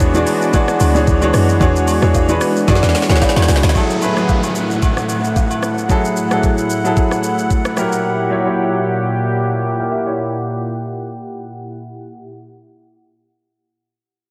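A deep, round log drum bass opens this amapiano excerpt, its dark, percussive notes hitting with a fast attack and decaying before it drops out at 3.7 seconds. Around it, a clear, intimate grand piano plays accompaniment up front, its long sustain carrying faint action noise, while a smooth, detuned sawtooth pad holds sustained chords with chorus and sidechain pumping, running until the close at 12.3 seconds. An electronic afro-pop drum kit with a knocking kick, woody snare, metallic hats, rim click and shaker swings lightly, with a drum fill leading into the shift at 3.8 seconds, as agogo bells and woodblock sit in the background. A downlifter slips in beneath as a filter sweep unfolds over the second half, and the chords move through E13, F#m9 and F#7b9. The mood is late-night and hypnotic, with the whole mix soaked in a lush hall reverb that gives it a dreamy haze.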